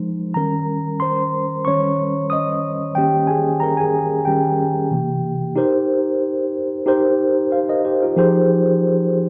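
A mellow tine electric piano carries this short soul fragment on its own, sounding clean and up front through its built-in speakers, with a warm tone that spans from C3 up to Eb6. The mood is smooth and silky, moving at 92 BPM in 4/4 with a light swing on the sixteenths, and the tuning sits slightly low at A4 = 438 Hz. The opening stretch, up to 5.6 seconds, leans on Eb7 and C7 chords, after which the harmony turns toward Cm7 and then Fm7 by 8.2 seconds. The playing sits in a large studio with a moderate reverb that gives the notes a soft halo, and the feel is that of musicians captured live together in one room. Lasting just over nine seconds, the clip is lifted from a longer piece.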